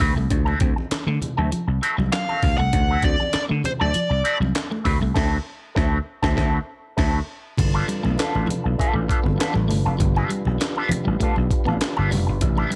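Funk with a playful, gritty mood, built on a growly, punchy slap bass up front and a compressed, sampler-style breakbeat kit with a thumpy kick, high-tuned snare, hi-hat, handclaps and crash, plus faint, distant congas. A twangy envelope-filtered guitar with wah plays accompaniment beside a clean, scooped guitar riff, while an overdriven lead guitar with a parked wah states a short, nasal melody from 2.1 to 4.4 seconds, and the band hits an accent before the harmony moves from D9 to G9 at 7.6 seconds. There a dark, round tonewheel organ enters with sustained chords through a fast rotary speaker, with chorus vibrato and light overdrive, in a dry mix cut from a longer piece.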